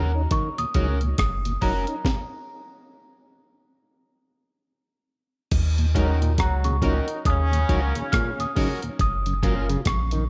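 Opening on a slightly out-of-tune, bell-like celesta melody with tape echo over a round sine sub bass, a twangy guitar at the edge of break-up, a stringy auto-wah clav, a dark slow-rotary tonewheel organ and a gritty, pitched-up breakbeat kit, this serious, hypnotic roots reggae excerpt in Eb minor at 69 BPM swings through a stop at 2.0 seconds before a nasal, straight-muted trombone section adds a second line from 6.0 to 8.5 seconds, all in a dry room.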